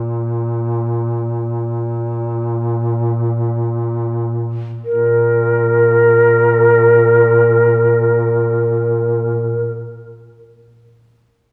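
Caucasian folk lament in free time, mournful and solemn, cut from a longer piece: a mellow duduk holds a low drone on Bb2 from the start, its vibrato and scooped notes carrying a distant, roomy folk character while the pace slows through the opening 4.8 seconds. At 4.8 seconds a reedy, airy shakuhachi enters with the melody around Bb4, its bamboo tone soft in attack with rolled-off highs and vibrato, sitting up front above the drone. A wet concert hall reverb places the listener further back in the room, lending both instruments a long, hanging tail.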